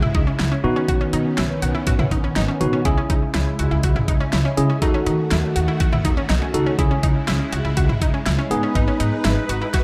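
An overdriven pop drum kit with a knocking kick and fat snare sits up front in this cool, nocturnal synth-pop excerpt, joined by a woody, thumpy pizzicato upright bass, a worn, slightly out-of-tune tine electric piano, bright, detuned analog pluck arpeggios with chorus and analog delay, and sustained vintage string-machine viola chords with ensemble chorus, the whole mix soaked in dreamy plate reverb.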